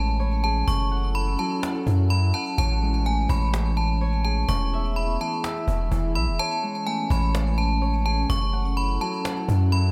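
A deep, mellow 808-style bass sits up front through this blissful, dreamy half-time cloud-rap excerpt, joined by a bright, inharmonic FM bell melody with chorus, phaser and digital delay, a warbling, nostalgic lo-fi pad of detuned sustained chords, ringing thumb-plucked Celtic harp arpeggios through a digital delay, and a snappy cajon played with soft hands whose kick drops out from 6.4 to 6.9 seconds, all over an Amaj7, F#m7 and E progression in a light studio reverb.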